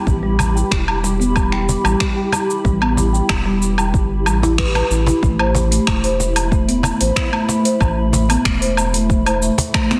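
A granular cloud pad and a marimba played with soft mallets open this mystical organic downtempo excerpt together, the pad holding blurred, evolving chords with built-in reverb, twelve-bit sampler grit and sidechain pumping while the woody marimba spins mellow arpeggios through a delay. At 93 BPM in a straight 4/4, a round analog bass enters at 0.1 seconds, deep and dark, along with an overdriven electronic kick and a deep house drum kit whose metallic hats, cabasa, finger snaps and woodblock sit up front, its snare softly clipped. A snappy cajon joins at 0.4 seconds, close and dry beside the kit and kick, which were re-recorded in a large room. The harmony rests on E minor before a full-band accent at 4.6 seconds leads into a new section at 5.2 seconds that settles on A minor add nine, in the key of A minor. Light digital ambience surrounds the parts, and the master is dense and heavily limited.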